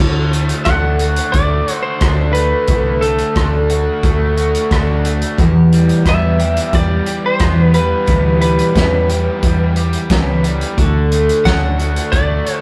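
Folk rock with a heartland rock lean, this wistful, dusty passage moves at 89 BPM in a straight 4/4, cut from a longer piece. A dark, full-bodied twelve-string acoustic guitar carries the picked accompaniment with an octave-doubled shimmer, while a bright, overdriven garage guitar, double-tracked, plays a riff underneath at a lower level. A round, hollow-body short-scale bass anchors the low end with an amped, dusky tone, and a loose indie drum kit enters at 0.3 seconds, sitting up front with a fat snare, tight kick, hi-hat and rim clicks. At 0.7 seconds a lightly driven lead guitar, compressed and slightly broken-up, takes the melody with a dark tone. The harmony rests on D before shifting to E minor and returning to D, all within a rough rehearsal-room sound coloured by a small room's moderate reverb.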